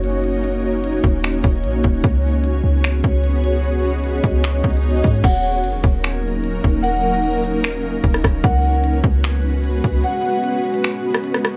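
An airy, detuned pad with chorus, tremolo and sidechain pumping holds sustained chords through this hazy, spacious cloud-rap excerpt at 150 BPM in half-time Eb minor, over a deep, boomy sine 808 bass and an electronic trap kit with a hard-clipped kick, crisp hi-hats, finger snaps, rim clicks and crash, while a background electronic swell at 4.0 s gives way to a bright, fingerpicked concert harp melody at 5.2 s, heard through a low-pass filter and delay, and the kick and bass drop out at 10.0 s.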